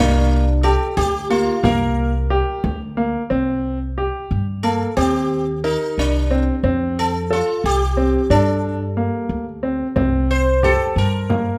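Contemporary chamber music in an uneven 5/8 at 180 BPM in eighths, hypnotic and urgent, this excerpt from a longer piece sets a bright, buzzing sitar melody shimmering with sympathetic strings over clear, short-sustained concert grand piano arpeggios and a woody, thumpy pizzicato upright bass, all up front in light reverb, while a frame drum sits in the background from 1.0 to 3.1 seconds and again from 10.0 seconds as the harmony moves from Gm/C through C5, Eb6, Fadd9 and Gmadd9 back to C5.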